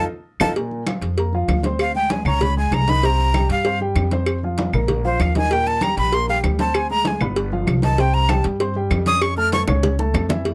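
A breathy, up-front metal flute with vibrato and a crisp chiff solos over a danceable, sophisticated Afro-Cuban jazz groove at 194 BPM, opening on a band accent and dropping out at 9.6 seconds, while a dark, mellow baby grand piano comps with long sustain, a thumpy gut-string pizzicato upright bass anchors the low end, and low-tuned bongos with cowbell, damped thin-skinned congas and woody claves enter at 0.4 seconds, closing with a drum fill from 9.7 seconds in this short cut from a longer piece, under light reverb.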